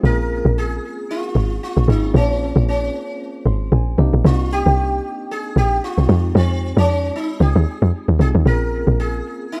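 A rough home demo with small room ambience frames this deep, soulful amapiano fragment, cut from a longer piece, where a tight, punchy log drum bass sits up front with its fast, decaying attack and noise layer. A warm tine electric piano with medium tremolo carries the Bbm9, Cm9 and Fm9 chords and adds a fill from 3.2 to 4.2 seconds. A bright, buzzing sitar with shimmering sympathetic strings plays the melody through tape echo, and the bass drops out at 9.2 seconds.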